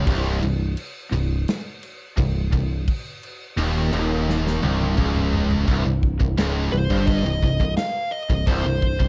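A dark, warm production with light reverb frames this short heavy metal excerpt cut from a longer piece, moving at 86 BPM in 4/4 in C phrygian over a C minor chord, with an epic, heavy mood. Three picked electric guitars play a low riff from the start: a bright overdriven guitar set in the background, a lo-fi, double-tracked garage guitar with overdrive, and a scooped, high-gain guitar with distortion. Underneath, an overdriven electric bass with a round, growling tone, both direct and amped, sits up front. The acoustic drum kit, recorded in a small room with a tight kick and a medium-tuned snare, comes in at 0.1 seconds and stays up front, using china and crash cymbals and toms as it holds a half-time feel until a drum fill from 4.3 to 5.7 seconds. At 6.7 seconds a nasal lead guitar with a parked wah enters for an overdriven solo up in its high register, carrying the second section to the close.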